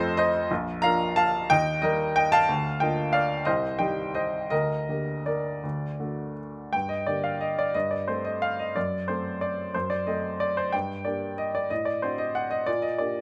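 A solo baby grand piano, present and up front with a warm tone, carries this elegant, wistful classical waltz in G minor, spanning Bb1 to Bb5 in a flexible rubato 3/4 at roughly 157-196 BPM. The opening phrases lean toward Bb and Eb before settling on a D chord, and a second passage from 6.7 seconds turns firmly to G minor, colored by F13/G and D7/F# harmonies before closing on Gm/Bb. Light reverb frames the playing in this short passage from a longer piece.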